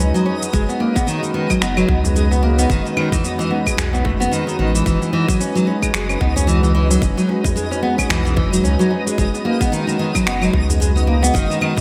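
Up front, a full-bodied fingerpicked nylon-string guitar plays delayed arpeggios with audible finger squeak across this peaceful organic downtempo excerpt at 111 BPM with a 16th-note swing, over smooth, detuned sawtooth pad chords with chorus and sidechain pumping, a round, tube-saturated sub bass, overdriven layered electronic shaker, claves and finger snaps in gated reverb, a faint twinkling granular shimmer, a tight electronic kick entering at 0.5 s and briefly dropping out from 4.3 to 4.9 s, and a very quiet, soft-handed clay darbuka from 0.7 s, all set in a bright 1980s-style digital production with moderate plate reverb as the harmony drifts through G#m9/F#, Amaj9#11/F# and F#9sus4.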